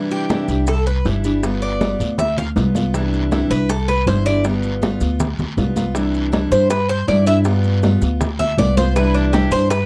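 Sunny and relaxed, this brief cut of Cuban son and guajira in C major moves at 160 BPM, with a bright, metallic Cuban tres up front playing arpeggios on its double strings as the soloist over Cadd9 and G7 chords, joined by a picked steel-string acoustic guitar, a woody, thumpy pizzicato upright bass entering at 0.5 seconds, ringing congas, tight high-tuned bongos and grainy maracas in the background, and a raspy, saturated guiro, all captured closely with little reverb.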